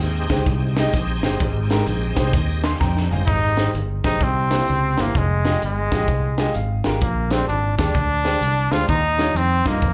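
Heard through a club PA with light reverb, this uptempo gospel excerpt in Ab major swings at 128 BPM with a reverent, uplifting mood. A woody, boxy upright piano and a fingered electric bass run throughout beneath a crisp fusion kit with a punchy kick and high-tuned snare, while a bright, shouting tonewheel organ with key click, chorus vibrato and slow rotary speaker holds sustained chords and adds a fill before stopping at 3.6 s. At 3.3 s, after a drum fill, a smooth-topped trumpet with light vibrato takes the melody up front, sharing plate reverb and slapback echo with the piano, which adds its own fill at 6.1 s.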